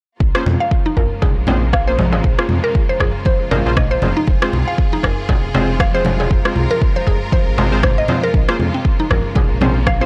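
A deep, up-front electronic kick drives this spiritual afro house excerpt at 118 BPM with a swung 16th feel, joined by a rumbling, detuned sawtooth bass, distant congas, a softly played clay darbuka from 1.0 s, and a produced afro-pop kit with rim clicks and toms in the background, while round analog key stabs with chorus and delay, a woody, mallet-like FM pluck arpeggio with phaser, and lush bowed studio strings holding sustained chords all pump under sidechain over Bbm7 and Fm, captured in a dry, gritty cassette-tape sound with transformer saturation.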